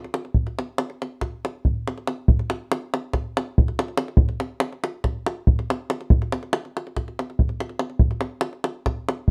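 A tight, dry davul sits close and up front from the first second, driving this restless, fiery Balkan folk fragment in a straight nine-beat metre, its acoustic skin captured by detailed close microphones with only a light touch of reverb around it.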